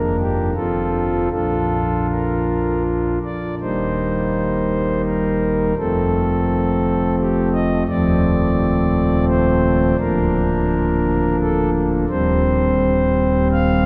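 Bathed in a cathedral's long, wet reverb, this short passage cut from a longer classical piece presents a solo pipe organ on a principal stop, its smooth, romantic voicing placed up front and reaching from deep bass tones to the upper register. The chorale-style writing moves in a flexible, rubato triple metre with a majestic yet serene mood. A brief opening phrase gives way at 3.6 seconds to a second section that unfolds through broad chords such as Eb, F7/Eb and Bb/D before arriving at Cm/Eb.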